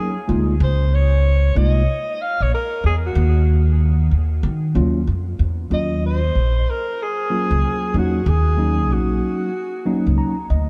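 Jazz-hop at 94 BPM in Eb dorian, this nocturnal, smoky excerpt cut from a longer piece swings its sixteenths over a bed of Ebm7 and Db5 chords. A breathy, distant alto saxophone carries the melody with vibrato and scooped notes, taking a solo through the first 5.7 seconds and bathed in analog delay, while a mellow tine electric piano accompanies it cleanly beneath. An up-front, growly pizzicato upright bass anchors the low end from 0.3 seconds, and the electric piano closes with a brief fill at 9.9 seconds.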